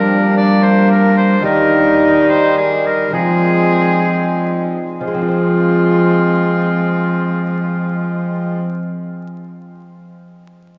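A rich, nasal cello sits up front in this brief, courtly renaissance-style consort dance in 6/8, its bowed gut-string tone carrying the bass beneath a solemn texture. Above it, a clear oboe with light vibrato and a soft attack sings the melody from a distance, while a close, airy-bowed viola adds a reedy second line. A present bassoon fills out the accompaniment alongside a bright, delicate fingerpicked lute with double strings, which rings on briefly after the other parts stop at 8.6 seconds. The pace slows from 0.6 to 5.0 seconds as the harmony moves from G minor through E-flat to F minor, and a new section then begins. A long, wet cathedral reverb and a dark production with vinyl crackle give the excerpt an antique glow.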